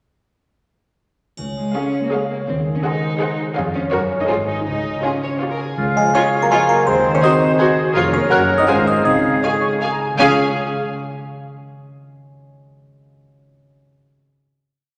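A playful, whimsical film cue in a lilting three-beat metre opens at 1.4 s with ringing broken chords on concert harp over a distant double bass section playing bowed and pizzicato bass, while a triangle strikes only briefly at the start. Strings fill in almost at once: a focused cello section carries the bass on the beats with a smooth top, and a lush viola section and two violin sections add after-beat pizzicato chords and sustained harmony, with the warm second violins answering at phrase ends. The phrase repeats from 5.8 s with a mischievous, magical glow as woodwinds join: an airy, close-miked flute, a punchy oboe counter-melody, a vintage-toned clarinet holding chords, and a present bassoon line. A delicate, tinkling music box, dry and bright, doubles the tune at the octave, and a French horn section in the background doubles the tune in thirds and in unison. A wet scoring-stage reverb gives the orchestra a spacious bloom before it settles on a final chord.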